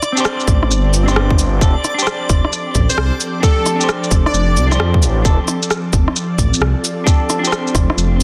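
A dense, heavily limited modern mix sits in a light digital ambience, opening this ghostly, nocturnal future garage excerpt with a bright, reversed granular texture drifting in the background alongside layered electronic rim clicks, cabasa and shaker, their snare edged with soft clipping. A clean, hollow-bodied electric guitar plays fingered accompaniment through spring reverb, delay and sidechain pumping, while a menacing detuned saw bass with a saturated filter swell arrives up front with a tight, layered electronic kick at 0.5 seconds. The swung groove moves over Am11 and F69 chords. An ethereal, airy pad enters at 2.2 seconds, its slow attack and long release softened by ensemble chorus, reverb and pumping into a mellow bed. From 2.9 to 4.9 seconds a punchy, catchy plucked lead with a sub octave carries the melody, colored by subtle chorus, cassette tape and digital delay.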